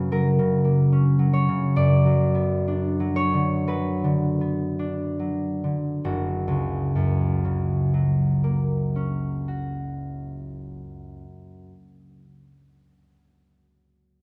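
A solo concert harp, fingerpicked and ringing up front, opens this dreamy, peaceful classical fragment in F# major with a rubato 4/4 feel between 45 and 75 BPM, spanning F#1 to D5 as it slows through the first 6.1 seconds, moves from F# to Bm/F# and back to F# at 6.1 seconds, all cut from a longer piece and set in a moderate scoring-stage reverb.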